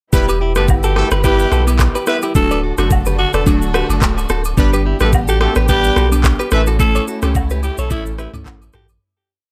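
Afrobeats at 108 BPM in E dorian, mellow and smooth, built on a knocking drum kit with soft kick, syncopated rim clicks and shaker, a deep, punchy sub bass bouncing with slides, glassy chorused digital keys, a twangy clean guitar figure doubled in thirds with delay, a breathy, raspy alto saxophone hook with delay, short riffs from a smooth horn section that drops out at 6.6 s, lush distant strings, and background agogo bells and woodblock, all moving through Em, D, G and A before fading out from 6.8 s.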